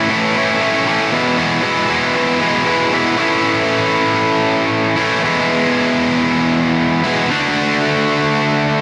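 A straight 4/4 rock pulse at 116 BPM drives this sunny, swaggering excerpt, cut from a longer piece, where a lone distorted electric guitar plays from start to finish, gleaming and picked with overdrive, double-tracked and up front, ranging from E2 to F#4. The chords move from A to E, then return to A at 3.2 seconds before passing through E and landing on D at 7.3 seconds. A wet, lush hall reverb with a 2.2-second tail gives the whole thing a big arena sound.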